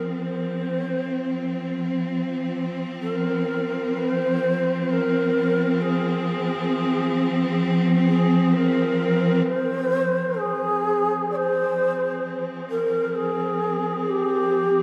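A breathy bamboo shakuhachi with a chiffy attack and expressive vibrato carries the melody through tape echo over a focused, bowed chamber cello section holding sustained F minor chords, both fading in over the first 9.5 seconds in this unsettling, cavernous free-time ambient fragment cut from a longer piece and bathed in a cathedral reverb.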